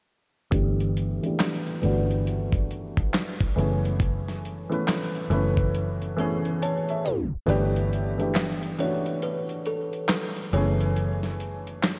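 Melancholic and hazy, this slow lo-fi hip hop excerpt at 69 BPM sways on a swung groove as a woody, slightly detuned upright piano with cassette tape coloring and a filter sweep shifts between G6 and F#m11 over a round, foam-muted electric bass and a gritty, overdriven sampler-style kit of thumpy kick, snare, hi-hat and handclaps. Amid a drum fill, a piano fill and a tape stop, a buzzing kalimba melody with diffuse ambient delay enters at 6.2 seconds. The kick drops out at 7.5 seconds, and faint, distant finger snaps join at 8.3 seconds, all bathed in a dreamy, reverb-soaked hall.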